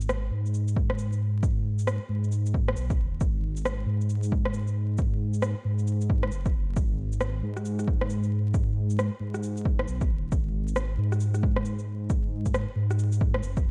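Melancholic and rainy, this future garage excerpt moves at 135 BPM in G# minor with a swung 16th-note feel, wrapped in a dark production with digital ambience and vinyl crackle. A deep, rumbling detuned saw bass sits up front with sidechain pumping, while an overdriven electronic shaker and rim click carry vintage 12-bit sampler grit from the start. A punchy, layered kick drum with the same overdrive and grit enters at 0.8 seconds.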